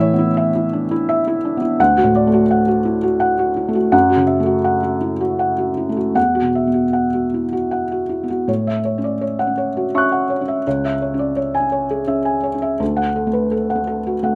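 A felt-muted upright piano plays alone in this hopeful, intimate neoclassical minimalist passage, its dark, thick-felt tone sitting up front in a dry, close space with the soft clatter of its action clearly audible, as a gently rubato waltz-time progression turns to a new phrase at 8.5 seconds.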